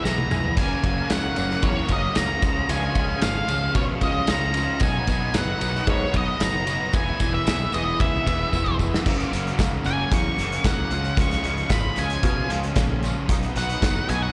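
Upbeat and carefree, this indie rock excerpt at 113 BPM in a straight 4/4 moves through E, F#, C# and B as a dark, up-front octave-fuzz lead guitar with plate reverb, slapback echo and analog delay carries the melody and takes a solo from 9.1 seconds, over a dark, compressed fuzz guitar riff and a bright, twangy, scooped electric guitar riff with ensemble chorus tucked in the background. A punchy, bright picked bass and a loose, up-front drum kit with a punchy kick, dark cymbals and a pumping room sound drive it along, opening with a fill and adding another at 8.5 seconds, while a jingly vintage tambourine sits behind. A very quiet, lush, detuned sawtooth pad with chorus and phaser sustains chords underneath, all heard as a live gig through the venue's PA with recital hall reverb.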